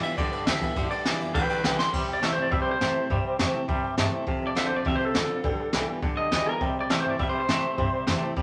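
Retro and rowdy, this brief rockabilly clip sets a slightly broken-up, twangy lead guitar through a small old amp with spring reverb up front over a clean tremolo guitar riff, a bright picked dreadnought acoustic and a thumpy pizzicato upright bass in the background, a dark, slightly detuned upright piano kept very quiet, and an airy brushed drum kit with a boomy kick that plays a fill at 1.8 seconds before the G7 gives way to C.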